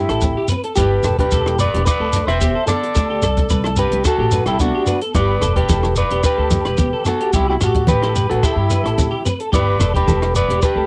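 A straight 4/4 groove from a dry compact cocktail drum kit with a punchy kick, hi-hat and rim click, a woody pizzicato upright bass and a grainy, mellow shekere carries this joyful, sunny highlife guitar band excerpt, where a twangy, slightly broken-up electric guitar plays the up-front melody through analog chorus, a raspy, growling trumpet with scooped notes adds a second line in the background, a full-bodied picked steel-string acoustic guitar with finger squeak accompanies from further back, a bright, compressed clean electric guitar plays arpeggios through ensemble chorus and analog delay, and low-tuned, damped congas join at 5.2 seconds, all in a home cassette recording with little reverb.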